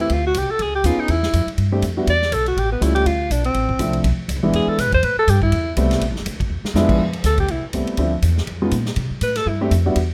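A clear alto saxophone sits up front in this moody, smoky piece of small-group swing and bop, carrying the melody with light vibrato and scooped notes under a touch of plate reverb. It moves at a brisk 244 BPM in 4/4 with a swung eighth-note feel, in A minor, and the passage is cut from a longer performance. A warm, intimate grand piano accompanies close by, its action noise audible, while a woody pizzicato upright bass with steel strings anchors the low end. A big-room drum kit with a punchy kick, medium-tuned snare, hi-hat, ride and crash swings quietly beneath, adding a fill at 6.5 seconds. At 7.0 seconds the harmony shifts into a new section and the saxophone takes a solo over chords such as Am9, Dm7 and C69, stopping at 9.6 seconds as the band plays on briefly. The sound is natural and detailed, with light room reverb.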